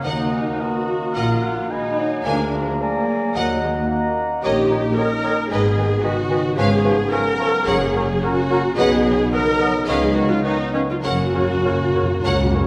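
Bathed in a wet scoring-stage reverb, this dramatic, urgent classical excerpt at 109 BPM moves with rubato in 4/4 through F# major, tuned to A4 = 436 Hz, as a lush violin section carries the melody over a second violin line in the background. Around them sit a dark clarinet, a roomy oboe, an airy silver flute and a smooth bassoon, along with an up-front viola section sliding with portamento. Mellow French horns hold chords while a bright, ringing harp plays arpeggios. A woody, distant cello section and a double bass section anchor the bass, and close, dry timpani enter at 7.7 s, with a fill from 11.0 s.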